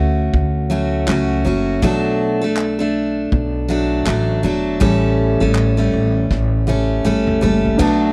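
At 80 BPM in 4/4, the sixteenth notes carry a gentle 60% swing, giving this short acoustic pop excerpt a wistful, tender sway in tuning set to A4 = 439 Hz. A bright, full-bodied jumbo steel-string guitar sits up front from the opening, picked on fresh strings with audible finger squeak as the harmony moves from Dmaj7 to Bm7 and then A7. Beneath it, a pizzicato upright bass with gut strings adds a dark, thumpy low end. A loose indie drum kit joins at 0.3 seconds, recorded in a studio room with a pumping room sound, a punchy kick, a fat snare, dark cymbals, handclaps and toms, and it plays a fill from 6.3 seconds. At 7.8 seconds a woody upright piano with long, natural sustain appears just as the clip ends, and the whole mix stays dry with very little reverb.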